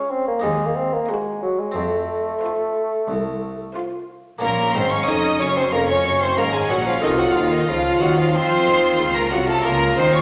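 A mellow, roomy bassoon carries the melody up front alongside a rich, vibrato-laden violin section in this stormy, dramatic baroque-style concerto movement in Bb minor, moving at a straight 92 BPM in 4/4 and cut from a longer piece. A second violin line sits in the background while violas and a bright, airy harpsichord fill in the accompaniment, with a lush cello section joining on the bass at 0.4 seconds and double basses adding depth from 4.4 seconds as the harmony moves from Ebm and F toward Bbm and F7/C. A recital hall reverb gives the ensemble a wet, spacious finish.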